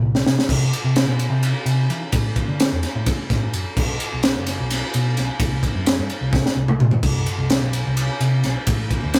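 This rough rehearsal-room recording has a warm saturation and light reverb, cut from a longer piece of math rock and midwest emo. The mood is wistful yet bright, with a straight feel in an odd 7/8 metre. A crisp acoustic fusion kit sits up front, gritty and saturated, with a high-tuned snare, a punchy kick and a small, pumping room around it, moving across crash, ride and toms. A hollow-body short-scale electric bass, picked and amped, gives a dark, round low end from F#1 up to E3 and sits slightly behind the drums. The drums open with a short fill from 0.0 seconds, then play a second fill at 6.3 seconds.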